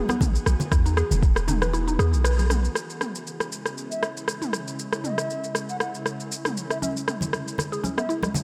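Warm and spiritual, this short afro house excerpt moves at 118 BPM in C# minor with a gentle 16th-note swing, opening on an Eadd9 chord under an ethereal, detuned pad with slow attack and ensemble chorus, woody FM mallet-like plucks carrying arpeggios through chorus, phaser and digital delay, bright hard-hand congas, an overdriven, layered deep house kit with rim click, shaker and toms, and a boomy sine 808-style bass pumping against a deep, up-front electronic kick. The kick drops out at 1.7 seconds ahead of a band accent at 2.2 seconds, and the bass and congas fall away as the harmony moves to C#m at 2.8 seconds. From 3.9 seconds a pure, reedy bass bansuri with vibrato and rolled-off highs floats a high melody through digital delay, while the plucks and congas return at 6.8 seconds, all set in light reverb.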